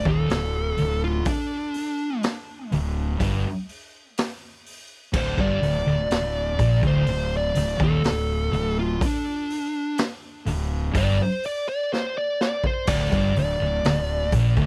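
Stoner and doom metal at a crawling 62 BPM in straight 4/4, this sludgy, hypnotic passage is cut from a longer piece and tuned slightly below standard pitch. A fuzz lead guitar, dark and distorted with tape echo, carries the melody up front as a solo across the whole stretch. Beneath it, two thick fuzz guitars grind out a low riff further back in the mix, while a round, punchy fingered bass with overdrive sits up front and anchors the bottom. A raw garage drum kit, boomy in the kick and gritty with a rolled-off top, drives crash, hi-hat and snare from 0.1 seconds and breaks into a fill from 11.9 to 12.9 seconds. The sound is dry and close, like a 1970s studio session, built around a D5 chord.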